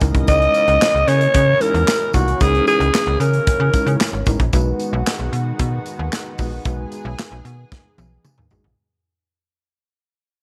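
Late-night and funky, this short early-eighties boogie funk cut opens on a snappy, metallic slap-like FM bass, a tight, polished studio drum kit with handclaps and toms, a mellow tine electric piano, a lush, detuned unison pad with chorus in the background and a jingly tambourine. A breathy, raspy alto saxophone enters at 0.3 seconds to carry the melody up front with slapback echo until 4.2 seconds, before the groove fades out from 4.5 seconds and closes on a drum fill at 7.7 seconds.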